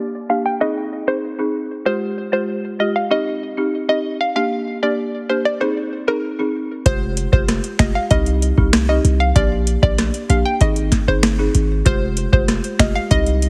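A woody, rustic folk marimba opens this tough, sultry dancehall excerpt at 96 BPM, joined at 0.3 seconds by a hollow, bouncy square-wave pluck carrying the melody through chorus and delay while a filter sweep runs across the opening 6.9 seconds over chords cycling through Bb6, Ab, Fmadd9 and Cm. At 6.9 seconds a booming analog drum machine arrives with a deep kick, crisp snare, metallic hats, finger snaps and rim clicks, roughened by overdrive and 12-bit sampler grit, alongside a deep, boomy 808-style sine bass. Light digital ambience surrounds the mix, which is heavily compressed into a radio-like sound with every part up front.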